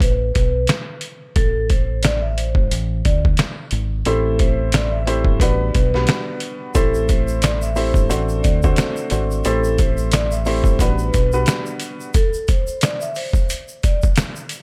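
A swung 89 BPM boom-bap groove in A dorian, with gritty, pitched-down sampler drums, a thumpy kick and a round, dark fingered electric bass up front, carries a reflective, moody cut where a soft-mallet vibraphone rings out a mellow melody through delay, a woody, vintage upright piano with cassette-tape colour joins at 4.1 s, and a grainy tube shaker sits in the background from 6.7 s, all in a roomy studio reverb.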